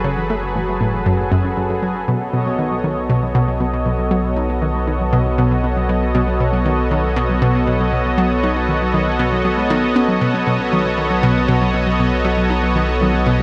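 A lush, thick pad of detuned sawtooth voices sits up front with sustained chorused chords, joined at once by a bright, round analog pluck riff with chorus and delay and a deep, mellow sine sub bass, all bathed in a huge, wet reverb with a cassette tape tone. From 0.2 seconds a dark, warbling lo-fi pluck fades in far in the background, tracing chorused, delayed arpeggios over a shift from F#m to B7. The result is cosmic, expansive sequencer-driven space music in a steady, straight 4/4, cut from a longer piece.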